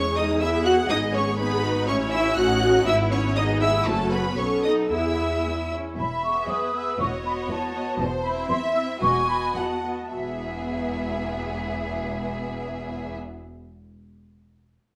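Quick classical-period symphonic movement in E major and 2/4, cheerful and graceful at 101-123 BPM with rubato, where lush, focused violins carry the melody over a second violin line, expressive viola accompaniment with portamento, a distant cello and bright double bass bass line, and a pure, crisp-attacked flute ensemble that joins at 6.0 s before the music slows between 7.5 and 10.1 s, all set in a stone room's reverberant glow.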